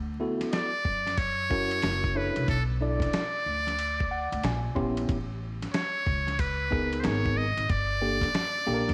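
Jazz-hop at 92 BPM in D major with a smooth, relaxed swing, cut from a longer piece, where a woody pizzicato upright bass opens at 0.0 s, a worn, slightly out-of-tune tine electric piano with light overdrive adds chords and a fill at 3.8 s, a gritty, compressed sampler-style drum kit brings a thumpy kick, snare, hi-hat and ride, and a buzzy, up-front trumpet with metal mute sings a vibrato-laden jazz solo with scooped notes and slapback echo, all under light reverb and vinyl crackle.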